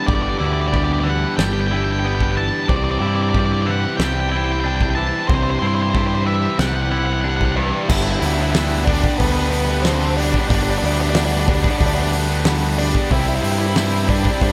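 A straight 4/4 pulse at 92 BPM in G major drives this cinematic, soaring post-rock fragment: a loose acoustic drum kit with a punchy kick, fat snare and dark cymbals sits up front in a pumping room beside a growling, overdriven picked bass, while a distorted octave-fuzz lead guitar carries the melody over a biting overdriven guitar riff and a bright, twangy, compressed twelve-string electric guitar plays analog-delayed arpeggios in the background through the build-up until 7.9 seconds, when a hollow-bodied overdriven semi-hollow guitar takes up a riff behind the others as the chords move between G and Cadd9 in a small room ambience.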